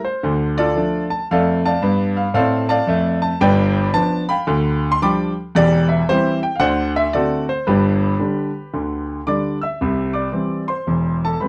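A clear, worn grand piano plays solo and up front in this swinging, exuberant stride jazz excerpt, its slapback echo and light reverb set in a dry, close 1970s-style studio sound as it moves from Dm through G7 and D7 to G before a new section lands on C at 9.8 seconds.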